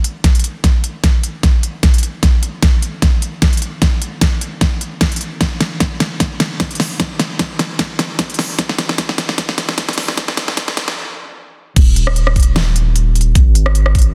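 A layered, tape-warm pop drum kit with a fat snare and crisp hats opens this lush, dreamy, half-time future bass passage alongside a knocking electronic kick, running a drum fill and filter sweep through an 11.8-second build-up that stops briefly at 11.0 seconds before the drop lands with a deep, thick, saturated sine sub bass that pumps under sidechain, all set in light reverb and a dense, heavily limited modern master.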